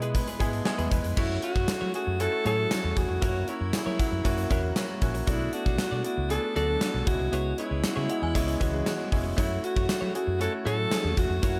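A clear grand piano opens this 1980s-style pop excerpt with a short fill, over a gated drum kit, a fingered electric bass and a twangy, clean electric guitar riff bathed in lush chorus. The mood is dramatic and nostalgic, moving at 117 BPM in a straight 4/4 in F# minor. At 1.2 seconds a bright, close-miked alto saxophone takes the solo melody with light vibrato and scooped notes, as the harmony settles on F#m7 before passing through F#7, Bm7 and C#m7. From 2.5 seconds, sawtooth synth brass adds dark, full-bodied stabs in the background, and from 4.0 seconds a chiming, inharmonic FM synth line with ensemble chorus and delay rings faintly above. The drums sit up front with a punchy kick, bright cymbals, tambourine and a gated stone-room sound, while the bass is round and amped and the piano keeps its audible action noise and long sustain. Light reverb gives the whole mix a small-room ambience.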